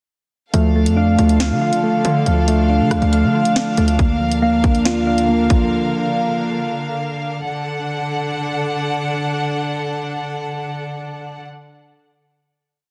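A punchy, hard-hitting 808-style bass with pitch slides drives this ominous D minor drill track at 139 BPM in a half-time feel, alongside an up-front electronic drum kit with a hard-clipped kick, sharp snare layered with snaps and skipping bright hats with fast rolls, muted felt-like synth keys looping a dark arpeggio through chorus, low-pass filter and digital delay, a round, mellow electric-piano-like synth arpeggio, and an intimate sul tasto chamber string section whose sustained, lightly vibrato chords hold on alone from 7.4 seconds through the closing chord, all under light reverb and a dense, heavily limited master.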